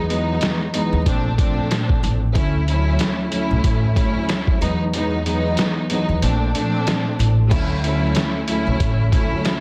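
A lush, bowed symphonic string section sits up front in this short boom-bap hip-hop cut, its soft-attack ensemble vibrato filtered at both ends and drifting through Emaj9, Bbmaj9 and Dmaj9 chords with a nostalgic yet confident air. Beneath it, a pizzicato upright bass with steel strings gives a woody, growly pulse that is bright at the edges and stops at 9.1 seconds. The sampler-style drum kit sounds pitched down, muffled and tape-warm, like it was re-recorded in a small room. Its thumpy kick, medium-tuned snare, hi-hat and crash ride a swung 16th-note groove. The kick drops out from 4.9 to 7.5 seconds, and then a new section begins as the chords return to Dmaj9. The mix is dry, dense and heavily limited, with vinyl crackle adding a dusty sheen.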